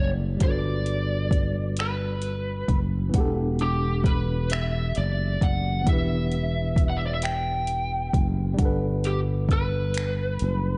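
A picked, overdriven lead guitar through a small cranked amp carries the dark melody in this sultry, late-night slow R&B excerpt in 6/8 at 44 BPM in E minor, moving over Gmaj7 and Em11 harmony. Beneath it, a worn, slightly out-of-tune tine electric piano with light overdrive supplies the accompaniment, while a growly, punchy fretless electric bass sits up front with sustained low notes. An electronic drum kit with a soft kick, metallic hi-hats and finger snaps enters at 0.4 s, carrying the ambience of a large room, and the production has light reverb and a muted top end.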